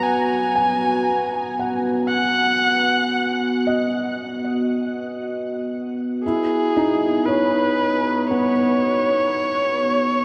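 A dreamy mix soaked in a huge ambient reverb frames this luminous, warm ambient excerpt in B major at a slow 58 BPM in straight 4/4, where a dark, woody electric violin sings the melody up front with vibrato and portamento, a soft, felt-muted upright piano plays mellow, intimate arpeggios, both carrying shimmer reverb and analog delay, and a vintage analog drone with chorus holds a detuned, warbling, evolving sustain alongside them as the harmony moves from B6/F# to E69 at 6.2 seconds.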